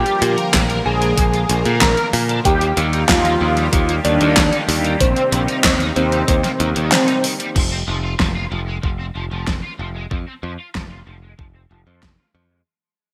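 A straight, driving 4/4 pulse from a thumpy electronic kick and a fat, overdriven pop drum kit with handclaps and gated reverb carries this nostalgic synthwave piece, where a brassy, sawtooth synth brass melody with chorus and delay and a very quiet FM synth bell line float over a swirling, sidechain-pumped phased analog pad, while a growly, punchy picked electric bass and a double-tracked, crunchy overdriven guitar riff carry on once the melody, bell and pad have stopped by 7.5 s, as the music fades out from 7.6 s in a lush hall with a bright 1980s-style digital sheen.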